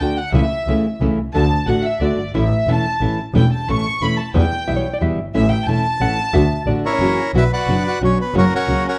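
Tango in 3/4 at 180 BPM, sultry and melancholic with a rubato feel. In this brief cut from a longer piece, a gut-string, period-style violin section bows a smooth second line over fingerpicked nylon-string guitar and an up-front bowed double bass with vibrato, while a clean hollow-body electric guitar adds another line from 4.7 seconds. At 6.9 seconds a reedy, close-miked bandoneon takes the melody as the harmony moves through F#7 to B minor, all set in a dark, lightly reverberant production with a warm glow on the strings.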